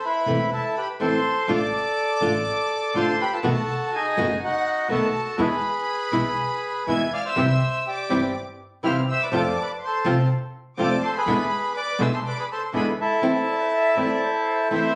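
Captured on a phone in the room, this passionate, melancholic tango fragment sits in a moderate studio reverb, with a rubato feel that lets the phrases stretch and breathe. A reedy, up-front bandoneon carries the melody from the start, while a distant bowed violin section adds an earthy, biting second line behind it. An acoustic flamenco guitar, fingerpicked on fresh-sounding strings, provides the accompaniment close to the listener, and a pizzicato upright bass with gut strings gives a woody, thumpy low end until it drops out at 12.9 seconds. From 7.4 seconds a second, darker bandoneon sits in the background with short stabs. At 13.5 seconds a breathy concert flute slips in with a bright, straight-toned, tongued second line that sounds slightly unsteady, as the harmony moves through a dramatic minor-key progression and settles back on its home chord at the close.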